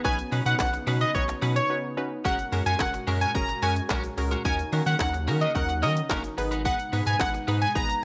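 Upbeat and summery, this dance-pop fragment in F# major at 109 BPM sets a bold, retro octave-doubled lead with chorus and slapback echo up front over a glassy wavetable pluck, a clean electric guitar riff with analog chorus, an airy pad, a round analog bass and the pumping of sidechained parts, all driven by a punchy house drum kit with cracking snare and a very quiet grainy egg shaker, with a brief break at 1.7 seconds as the chords move from Badd9 through F#add9 and D#m7 to G#m.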